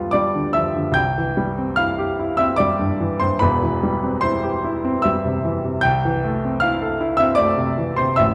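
Classical romantic nocturne for solo grand piano, yearning and wistful, unfolding in a rubato three-beat lilt across roughly 8.3 seconds cut from a longer piece, its warm, present tone and short sustain placed up front in a dark production washed by a recital-hall reverb, with the harmony settling from G7/D onto C and then Am/C.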